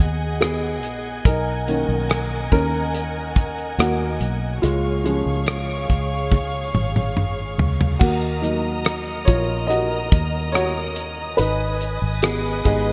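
A woody, boxy upright piano with short sustain carries the lead throughout this short excerpt from a hopeful, tender pop ballad at 71 BPM in 4/4 with a straight feel. Beneath it, a close studio string section holds soft-attack chords played sul tasto with gentle vibrato, sitting higher in pitch and lower in the mix than the piano. A round, punchy, foam-muted fingered electric bass sits up front, and a dry, damped 70s drum kit enters at 0.4 seconds with a tight kick, dark cymbals, hi-hat, rim click and toms, its gated reverb giving it a clipped bloom. The harmony moves from G#m7 through Bmaj7 and C#, a drum fill runs from 6.3 seconds, and at 8.0 seconds a second section shifts to D#m and then G#m. Light reverb and a bright, 1980s-style digital production frame the whole, with the band's warm, intimate tones set against that glossy sheen.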